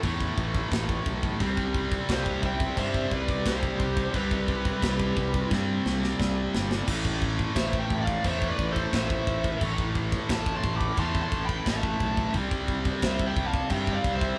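A tight, up-front metal drum kit drives this dark, epic heavy metal excerpt in A minor at 88 BPM, its bright china and crash cymbals, medium-tuned snare and tight kick ringing in a big room, with a drum fill between 5.5 and 6.9 seconds. Beneath it, an overdriven rhythm guitar and a scooped, high-gain guitar play riffs over A5, C5 and Am chords, backed by a growly fuzz bass, while from 2.1 seconds a distorted lead guitar carries the melody and a second, brighter lead plays a supporting line behind it. Light reverb gives the band the sound of playing live in one room.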